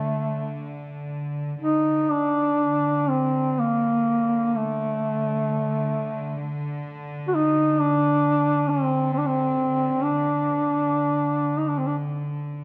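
A mellow duduk and a chamber cello section sound together from the opening moment in this solemn, longing Caucasian folk lament, cut from a longer piece. The bowed cellos hold a steady drone on D3 beneath, their earthy, warm ensemble tone carrying light vibrato and a smooth top. Up front, the solo duduk sings a folk-style melody between A3 and F#4, with vibrato and scooped notes, yet its tone feels distant and roomy. The pace moves freely in rubato within a 3/4 metre, at roughly 59-68 BPM, tuned to A4 = 438 Hz. A moderate concert hall reverb and a dark production wrap the sound. The duduk falls silent at 12.0 seconds, letting the cello drone linger alone until 12.6 seconds.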